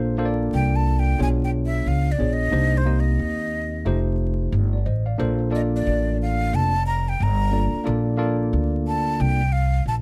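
A breathy jazz flute with vibrato and a soft attack carries the expressive solo melody over a worn, slightly out-of-tune tine electric piano and a woody pizzicato upright bass in this cool, swung hip hop excerpt, framed by light reverb and vinyl crackle.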